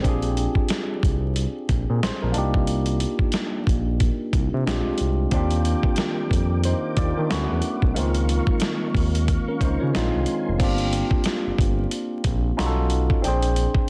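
Soulful and late-night, this short neo-soul and R&B excerpt moves at 91 BPM with a 16th-note swing, built on a dusty, gritty, sampler-style drum kit with a thumpy kick, crash, hi-hat and snare, up front alongside a smooth, detuned sawtooth-and-triangle synth bass. A barky, bright tine electric piano played through a combo amp and coloured by phaser carries the chords from Bb9 through Cm7 and Ebmaj7 to lush 6/9 shades, while a soft, flute-like tonewheel organ with slow rotary speaker and chorus vibrato sustains chords from 5.3 to 10.6 seconds. The dense, heavily limited master sits in light reverb with a layer of vinyl crackle, and the passage closes on a move to Gm7 and a Bb13.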